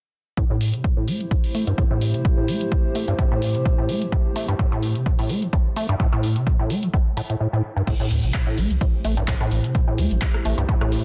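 Gritty and trippy, this acid house excerpt rides a squelchy, resonant acid bass riff with filter sweeps, chorus, overdrive and tape echo over an overdriven, punchy kick and an analog drum machine of crash cymbal, handclaps, hi-hat, rim click and shaker, while a dark, nasal, detuned pad sustains an Am7 chord with subtle chorus and sidechain pumping, and a round sine sub bass enters at 7.9 seconds to deepen the dense, heavily limited mix under light reverb.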